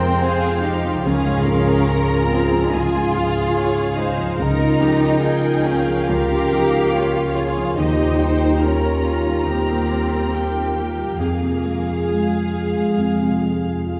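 At an unhurried 71 BPM in 4/4, with uneven, rubato beats, this tender, hopeful film-score passage for orchestra moves from F minor through D-flat and B-flat minor to an E-flat add9 before settling back on F minor. Con sordino violins carry a veiled, close, lush melody with vibrato over a soft-attacked second violin line in the background, while muted violas, cellos and double basses supply a dark, veiled foundation. A dark concert grand piano with deep bass anchors the accompaniment, mellow French horns hold distant sustained chords and a ringing harp plays arpeggios in the background, all bathed in the reverb of a recital hall.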